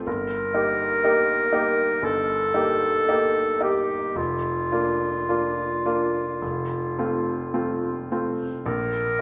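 Lyrical and tender, this short fragment of a romantic classical duo unfolds at a slow 52 to 62 BPM in 4/4, with a flexible rubato feel and tuning set to A4 = 439 Hz. A bright clarinet carries the melody from 0.1 seconds, singing in a narrow span from F4 to Bb4 in a classical style, placed up front and slightly louder than its partner. The grand piano accompanies from the very start, reaching from a deep F1 up to G4 with a brilliant, intimate tone, present and close enough that the action noise of the instrument can be heard. The harmony moves from Eb/G through Bb/F to F before the chords fall away at 8.7 seconds, and both parts sound until 9.2 seconds. A moderate concert hall reverb with a 2.3-second decay gives the pair a spacious yet close setting, as though this were a passage lifted from a longer piece.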